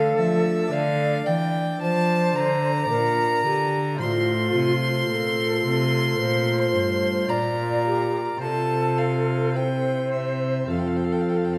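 A rich, single violin sits up front with light vibrato, carrying a radiant, serene melody high in its range, while a pure, hollow concert flute plays a close, tongued second line beneath it. This baroque-style sonata movement in F major moves slowly at 54 BPM in a rubato 3/4, cut from a longer piece. A chamber organ with bright, sparkling flute stops and a touch of chiff supplies the continuo accompaniment, a smooth bowed cello anchors the bass, and the whole ensemble blooms in a wet recital-hall reverb.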